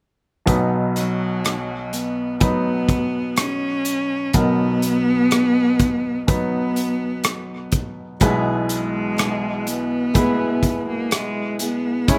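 This emotional, hopeful pop ballad excerpt opens at 0.5 s with a polished baby grand piano and a modern studio drum kit, moving in a slow, straight 4/4 at 62 BPM in B major. The piano sits up front in accompaniment, its clear tone touched by a slapback echo. The kit plays hi-hat, rim click and a punchy kick in a pumping studio room. At 1.0 s a single bowed cello takes the melody, focused and clear with vibrato in its mid register. At 8.2 s, as the harmony moves from B to E/B, a picked steel-string acoustic guitar adds woody arpeggios with the mellow character of old strings, sitting lower in the mix. The dry, close sound keeps every part intimate and immediate.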